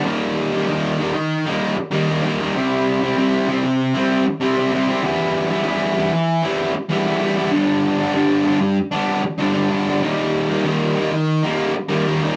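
Rock at 96 BPM in a straight 4/4, with a bittersweet, anthemic mood carried by a lone fuzz guitar that plays solo for the whole 12.4 seconds of this cut from a longer piece. The electric guitar is bright, picked and double-tracked, sitting up front with distortion as it moves through chords of Eb, C, Em and G before returning to Eb. The recording captures a band playing live in one room, with a moderate studio reverb.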